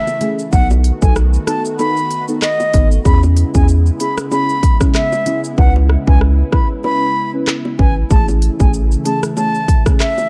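Dancehall at 95 BPM in E major with a sunny, summery mood, where an airy, close-miked wooden flute carries the melody through tape echo over a lush, phased unison pad and soft, detuned chord stabs that both pump with the beat, while a punchy, crisp pop drum kit sits up front alongside faint, low-tuned bongos and a round, nasal analog bass that enters at 0.5 seconds, with the hi-hats dropping out from 5.6 to 8.1 seconds in a dark, dry production.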